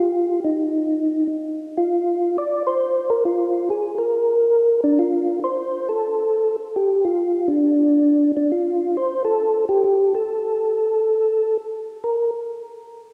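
Bathed in the long, wet reverb of a church, this short bluesy, soulful jazz passage at 136 BPM in a swung 4/4 features a solo tonewheel organ, placed up front from 0.0 to 12.3 s, whose soft, flute-like, percussive tone, with second-harmonic percussion, chorus vibrato and a slow rotary speaker, moves between D4 and D5 through three short sections.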